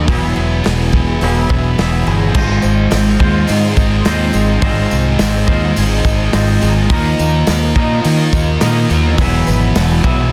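A steady, straight 4/4 pulse at 106 BPM drives this hazy, wistful slice of shoegaze and dream pop rock, cut from a longer piece and carried by a loose indie drum kit whose tight kick, medium-tuned snare, hi-hat and crash sit in a small room with a rolled-off top. Up front, a thick, distorted fuzz guitar plays a riff bathed in lush chorus, while a growling fingered electric bass, overdriven and bright, anchors the low end. A twangy, clean electric guitar with a scooped tone adds its own riff, smeared by reverse reverb. Further back, a picked twelve-string acoustic guitar spins shimmering, octave-doubled arpeggios with a boxy character, subtle chorus and slapback echo. A jingly tambourine slips into the background at 2.6 seconds as the harmony moves from Eadd9 to Ab6 and Ebsus2 before returning to Eadd9, all pressed into a dense, heavily limited modern master.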